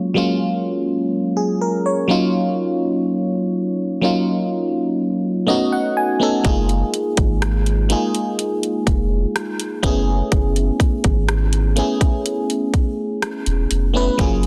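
A glassy FM electric piano with a bell-like attack opens this tender, smooth contemporary R&B excerpt at a slow 62 BPM in 4/4, its chorused tone decaying over a noise layer as it moves through lush chords such as F#maj9, D#m9/F#, B9 and Amaj9/F#. The piano plays alone at first and adds a short fill from 5.0 to 6.4 seconds before the rhythm section arrives. At 6.4 seconds a trap drum kit enters with a hard-clipped kick, metallic hi-hats and rim clicks, carrying a gritty vintage 12-bit sampler edge. A round, sine-like sub bass joins at 6.5 seconds, sitting deep and sustained in the low register. Light reverb surrounds the up-front parts, and the master is dense and heavily limited in a modern style.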